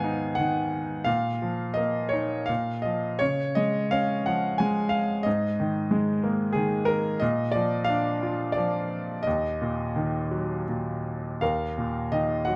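In a rubato 3/4 that drifts between 80 and 96 BPM, this short cut from a longer classical piece features a lyrical solo baby grand piano in Eb minor, cool and moody in tone. The piano sits up front with a bright, brilliant, natural sound and long sustain, ranging from Eb2 to Ab5, caught by close, detailed microphones in light reverb. Its harmony moves through Abm7, Bbsus4, Db and Absus2 before landing on Ebm at 9.3 seconds, and a new section begins at 11.4 seconds, just before the cut ends at 12.6 seconds.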